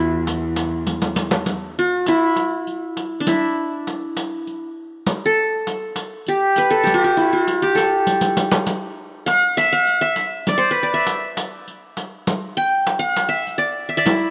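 A bright, plectrum-plucked qanun melody opens over a dark, reedy bowed cello drone that ends at 1.5 seconds, while an up-front riq with dark jingles and soft hands carries the hypnotic, melancholic 6/8 flow, with drum fills arriving near 0.9 and 8.1 seconds within a wet spring reverb in this cut from a longer Arabic maqam piece.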